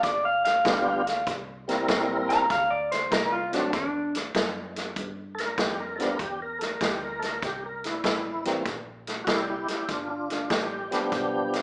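A slightly broken-up electric guitar, picked through a small old amp with a compressed, lo-fi bite, takes a solo at the start of this cut from a soulful, gritty electric blues shuffle before falling silent at 4.1 seconds. Underneath, a vintage drum kit drives the swung 4/4 feel with a punchy kick, a medium-tuned snare and hi-hat, its tone mid-forward with a rolled-off top. A tonewheel organ enters at 0.6 seconds and sits up front, full and lightly overdriven, with slow rotary speaker motion and chorus vibrato. A dark, foam-muted fingered bass stays round and in the background. The band moves through G7, C7 and D7, and the organ continues its accompaniment through the second pass above the rhythm section. The band sounds as if playing live in one room, with a moderate large studio reverb and a small-speaker character.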